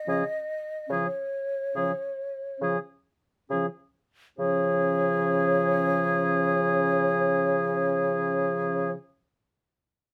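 Tender and lyrical, this slow, rubato excerpt of a romantic wind quintet movement in Db major and 3/4 at 36 BPM eases into a slowdown over its first 4.4 seconds, as an airy, hollow flute with vibrato and a soft attack carries the melody up front over a smooth oboe second line, a dark horn, a close-miked clarinet in the background, and a punchy bassoon bass, all in light reverb, slightly below standard pitch at A4 = 435 Hz.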